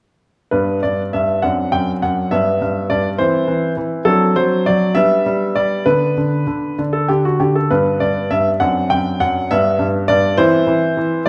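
A clear, intimate baby grand piano plays alone from 0.5 to 11.3 seconds in this elegant, graceful classical-period sonatina excerpt in G major and 6/8 at 67 BPM, its up-front, natural sound carrying audible action noise under a wet recital hall reverb as the rubato phrasing moves through G, D7/F#, C/E and Bm/D chords, with a brief unharmonized moment at 6.8 seconds.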